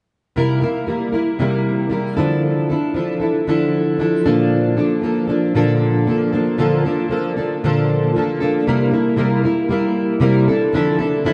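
A straight 4/4 pulse at 116 BPM carries this tender, reflective pop fragment, cut from a longer piece and tuned slightly low to A4 = 439 Hz. A double-tracked, fingerpicked, plugged-in jumbo steel-string acoustic guitar sits up front with a full-bodied tone, playing accompaniment from 0.4 to 11.3 s over C7, Dmadd9 and Bbmaj7, then returning to C7 and Dmadd9 as a new section begins at 8.7 s. A huge ambient reverb with a 4.2 s decay soaks the mix, giving it a dreamy quality.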